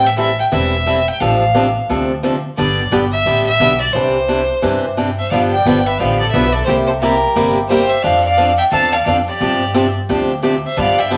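A swung 4/4 pulse at 176 BPM drives this short, playful western swing clip, cut from a longer country piece with a down-home feel. A clear, focused fiddle carries the melody up front with light vibrato, while a bright, boxy picked acoustic guitar supplies swing-style accompaniment alongside it. Underneath, a woody, thumpy pizzicato upright bass sits lower in the mix. At 5.2 seconds a second bowed fiddle joins with a smooth, even line beneath the lead, as the harmony moves from Am7, Dm7/A, G and Cadd9 into G7, C7, F6 and G7sus4. Wet studio reverb and a layer of vinyl crackle give the recording an old-record character.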